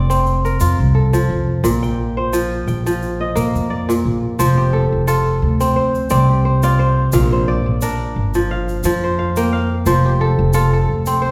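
Ringing, fingerpicked kora arpeggios open this flowing, joyful piece of West African string and xylophone music together with a woody, thumpy pizzicato upright bass on gut strings, both sitting up front and moving between F and Bb chords with a light swing. A grainy, bright tube shaker joins at 0.1 seconds, tucked low in the mix, as the passage moves from its opening section into a longer second one at 4.4 seconds. The whole is heard from further back in a wet recital hall, whose reverb lends the crisp plucking a generous, airy tail in this short cut from a longer piece.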